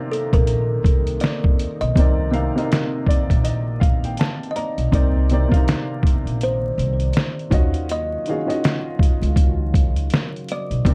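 A gritty, pitched-down sampler drum kit sits up front at 81 BPM in 4/4 with a swung 16th feel, its thumpy kick and medium-tuned snare joined at 0.3 s by a woody, pizzicato upright bass in this melancholic, reflective lo-fi hip hop passage cut from a longer piece. A slightly detuned upright piano plays filtered accompaniment while a close-miked kalimba carries a bright, ringing melody, also softened by a low-pass filter, over Cm9 harmony that shifts to Ebm9 at 7.5 s. In the background, a deep, moody pad holds sustained chords with chorus and its own reverb, and the whole mix has a dark, warm production with light reverb and vinyl crackle.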